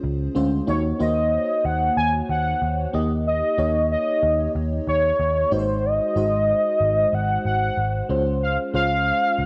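A lightly swung 16th-note groove at 93 BPM in 4/4 carries this short, nostalgic and dramatic fragment of 1980s-style pop in Eb dorian, cut from a longer piece. From the start, an FM electric piano layered with a soft pad supplies lush, dreamy chords with a mellow, decaying tone, colored by chorus, phaser and cassette tape. Beneath it, a vintage muted picked electric bass sits up front with a dark, round, punchy, foam-muted sound. At 0.7 seconds a velvety synth lead enters with the melody, its detuned sawtooth unison smooth and sustained, touched with vibrato, chorus and cassette tape, and it rises a little louder than the other parts. The harmony moves from Dbmaj7 through Ebm7, Eb and Ab7 before returning to Dbmaj7. A moderate spring reverb and the character of a home cassette recording give the whole fragment an intimate, aged feel.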